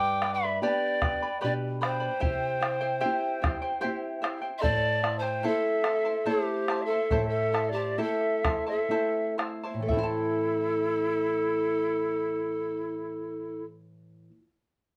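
In a slow, straight 3/4 at around 60-75 BPM, this earthy, melancholic Andean folk passage in A minor moves from G to C and settles on A minor, easing its pace partway through. A polished pan flute carries the melody up front, its airy, tongued straight tone showing a woody chiff even as it sounds distant. Alongside it, a large quena plays a second line, breathy and end-blown, with vibrato, soft attacks and rolled-off highs. The charango fingerpicks a shimmering accompaniment on its double strings, some doubled at the octave, while a small nylon-string guitar adds thumb-plucked support in the lower register. A round, vintage, band-limited bombo sits up front from 0.2 to 10.4 seconds, and a moderate studio reverb surrounds the ensemble in this section cut from a longer piece.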